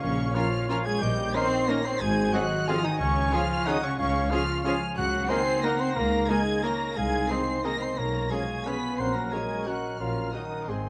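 This is a classical orchestral ballroom waltz in 3/4, sweeping and festive, with uneven beats and a rubato lilt that gives it a gently pushed-and-pulled swing. A lush, vibrato-laden violin section carries the melody high above the orchestra with a soft attack and expressive phrasing. A second line of very quiet violins, flutes with rolled-off highs, a mellow, distant clarinet and a punchy cor anglais weave in beneath. The bass is grounded by a rich cello section and a distant bowed double bass section, while violas fill in the accompaniment and French horns and a very quiet trombone section hold sustained chords. A bright, ringing concert harp spins arpeggios in the background, and a roomy trumpet adds mellow stabs from around 0.4 seconds. Close, detailed microphones capture the ensemble in a moderate concert hall reverb, and this short passage is cut from a longer piece.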